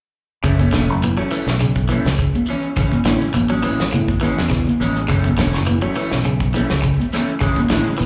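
A short, driving afrobeat excerpt in F# minor at 103 BPM opens at 0.4 s with the full band at once: two slightly broken-up, picked electric guitars, a fingered electric bass, a soul drum kit and a shekere, with congas joining at 0.6 s. The bass sits up front with a dark, round, amped tone, moving low beneath the harmony, which alternates between F#m7 and Amaj7. One guitar plays twangy arpeggios in a low register with slapback echo. The other, darker guitar cuts in with stabs coloured by vibrato, analog delay and slapback echo, ending just before the others at 7.9 s. The drum kit brings a fat snare, a tight kick and hi-hat with a mid-forward, rolled-off top, while the high-tuned congas sound bright, compressed and hard-struck, and the grainy shekere stays close, dry and mellow. The intense groove is heard as a live gig through the venue's PA, with club reverb and light small-room ambience.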